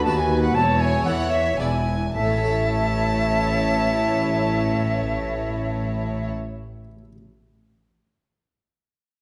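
Baroque-style classical concerto movement in 3/4 and A major, lively and festive, moving at 106-123 BPM and slowing over the first 2.2 seconds as the chords pass from B/D# through A/E and E7 to A. An airy, distant silver concert flute carries the melody, doubled by a chamber violin section played sul tasto with light vibrato, while a rich studio violin section adds an expressive second line and a lush, background viola section slides with portamento. A brilliant, dry, close-miked harpsichord fills out the accompaniment until 7.2 seconds, above a smooth, even cello section and an up-front double bass section, all set in a dark production with a recital-hall reverb.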